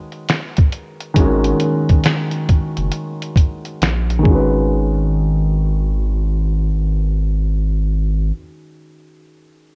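A muffled, pitched-down sampler-style drum kit with a thumpy kick, fat snare, hi-hat and finger snaps sits up front in this hazy, reflective lo-fi hip hop fragment with a swung feel, stopping at 4.5 seconds, while a deep, thick, saturated sine sub bass enters at 1.2 seconds and an intimate, mellow felt-muted upright piano, filter-swept through its opening and tinted by cassette tape, plays throughout in a digital ambience that also carries a cassette tape character.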